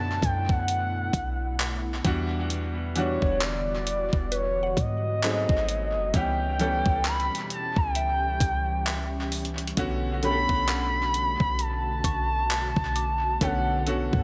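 A slow 66 BPM contemporary R&B groove in 4/4 with a swung 16th feel and a gated 80s digital drum machine entering at 0.2 s with thumpy kick, hi-hat and handclaps up front, its gated reverb and tape echo framing a longing, late-night B minor passage where a smooth, gliding portamento lead with vibrato, chorus and tape echo sings over a bright baby grand piano, an ethereal airy pad with ensemble chorus, a deep, boomy 808-style bass and a woody mallet-like synth pluck tucked in the background, moving through Bm9, Em9, G#7b9 and C#m7b5 in an echo-heavy mix with light reverb.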